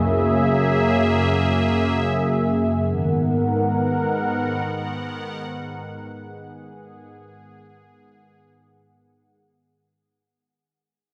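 Floating in free time, this brief hip hop fragment, cut from a longer piece, has a spacious, hazy mood. A single sweeping, resonant pad plays alone for the full 9.4 seconds, built from detuned sawtooth tones with a noise layer that gives it an airy, evolving texture and a filter swell. Its soft attack, sustained body and long release let each chord bloom and linger, while chorus and digital delay add shimmer, and the pad sits bright and up front across a span from F#2 to F#5. The harmony moves from F#7 to G#m7 at 2.9 seconds, tuned slightly below standard pitch at A4 = 438 Hz. Light reverb and a dark production frame the sound, and the whole passage fades out from start to finish.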